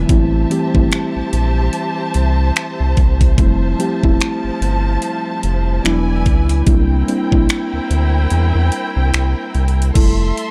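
A round, deep analog bass sits up front in this dreamy, romantic contemporary R&B excerpt at 73 BPM with a swung sixteenth feel in F major, alongside a trap kit of knocking kick, metallic hi-hat, finger snaps and crash, muted felt-like synth keys with chorus and a soft, intimate tone, and a lush bowed string section holding sustained chords with vibrato and sidechain pumping, all moving through Am7, Fmaj7, E7 and C7 in a dark, dry mix, while the kick drops out from 8.3 to 10.0 seconds.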